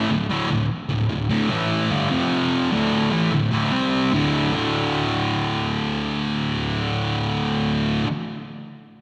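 A straight 4/4 rock pulse at 148 BPM drives this heavy, brooding D minor passage, cut from a longer piece, as a lone thick fuzz guitar, bright, picked, double-tracked and up front, grinds from D2 to C4 through D5, A5, G5, F5 and C5 chords from 0.0 to 8.1 seconds, its distortion steeped in a wet, lush hall reverb that gives a big arena sound.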